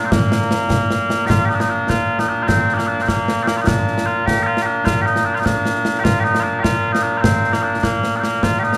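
Set in the moderate reverb of a church or concert hall, this short cut from a longer piece of Scottish pipe music in 6/8 has a stirring, ceremonial mood. Mellow small bagpipes carry the melody from the very start, their sweet, continuous tone sitting up front. Concert snare and bass drum join at 0.1 seconds, close and dry with dark cymbals.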